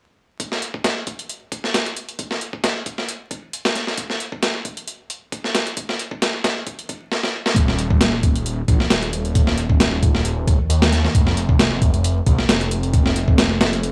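Energetic and funky, this breakbeat excerpt rides a lightly swung 134 BPM groove, opening on a gritty, compressed sampler-style drum kit with a thumpy kick, medium-tuned snare and hi-hat, all filtered and re-recorded in a small room, with a fill at 7.1 seconds. At 7.6 seconds a swirling, thick detuned saw bass enters up front, phased and tube-saturated, sustaining low notes between Eb1 and Eb2. The dry, hardware-sounding mix carries a layer of vinyl crackle.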